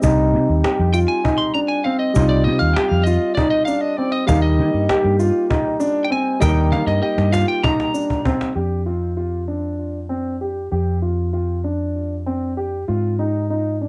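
Two grand pianos, a fingered electric bass, a cajon and a distant, grainy tube shaker open together in this driving, intricate progressive instrumental in 7/8 at 196 BPM in F dorian. A polished grand piano comps over Cm and Eb while a dark, mellow concert grand spins arpeggios through analog delay above the round, up-front bass. At 0.9 s a bright, slightly broken-up, twangy lead guitar takes a solo, and the woody cajon plays a fill before it, the shaker, the guitar and the comping piano stop by 8.6 s, leaving the arpeggiated piano and bass to move through F5 and Ab5 until the cut at 13.9 s, with cassette-tape coloring on the pianos, cajon and guitar and the feel of a small home room.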